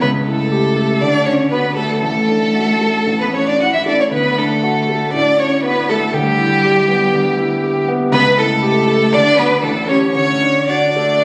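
A rich, up-front violin carries the melody with vibrato and expressive portamento through this stormy, urgent excerpt of a quick classical-period movement for piano quartet in D major, moving at 118 BPM in 4/4 with uneven, rubato timing. A second violin with a soft attack and gentle slides, and a dark, woody cello set back in the hall, add their own lines, while an intimate concert grand piano with deep bass, smooth vintage tone and audible action noise supplies the accompaniment, all four playing throughout. Captured on a phone in a concert hall with moderate reverb, plus added studio reverb and compression, the sound is cut off above 10.8 kHz.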